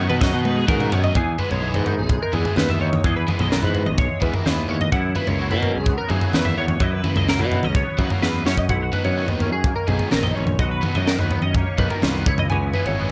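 A barely audible, bell-like glockenspiel with rubber mallets rings for the opening 0.7 seconds as this playful, intricate math rock and midwest emo excerpt in E lydian starts at 127 BPM, with a compressed, twangy twelve-string electric guitar carrying arpeggios through analog chorus, a twangy clean guitar accompanying in the background under ensemble chorus, a double-tracked overdriven guitar riff, a growly, up-front picked bass, and a crisp fusion drum kit with a high-tuned snare and tight kick firing fills at 0.2 and 8.2 seconds, all set in a dry room as the chords move from Emaj7 through F#7sus4 and Bmaj9 to C#m7.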